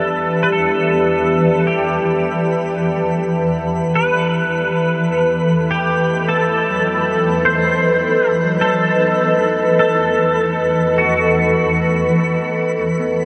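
A bright, clean pedal steel guitar, up front with ensemble chorus and diffuse ambient delay, sings a melancholic melody with slide and volume swells over a cloudy, evolving granular pad on Em11 and B7/E, while a very quiet, slightly broken-up electric guitar plays arpeggios and a twinkling granular texture fades in behind, all at 52 BPM in a dreamy, reflective ambient mix soaked in huge reverb, with the steel dropping out at 12.1 seconds in this short excerpt.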